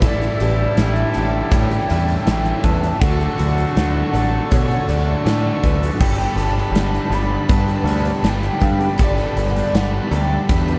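Shoegaze and dream pop rock at 80 BPM in G lydian, this wistful, dreamy excerpt drifts over A7sus4, Dmaj7 and Gmaj7, its mix soaked in a huge ambient reverb. A pure, round sine lead carries the melody with chorus, tremolo and diffuse delay, while a growling overdriven bass and a punchy, bright-cymbaled arena drum kit sit up front. Behind them, a shimmering twelve-string acoustic arpeggiates, a reedy, dark accordion holds sustained chords, and three electric guitars play riffs: an overdriven hollow-body in the background, plus a very quiet double-tracked overdriven guitar and a very quiet twangy, compressed clean one.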